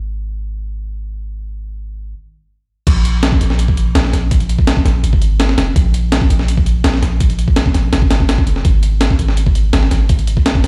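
A straight 4/4 pulse at 166 BPM underpins this nostalgic, raw drum and bass and jungle excerpt, which opens on a deep, sine-toned 808-style bass with a fast attack and mellow, decaying sustain under a filter sweep, breaks for a stop at 2.1 seconds, then drops at 2.9 seconds into a gritty, compressed, pitched-up sampler-style drum kit with a thumpy kick, high-tuned snare, hi-hat and crash cymbal in small-room ambience, both parts sitting up front in a mix heard as if through a big sound system in a bare stone room and passed through a low-pass filter.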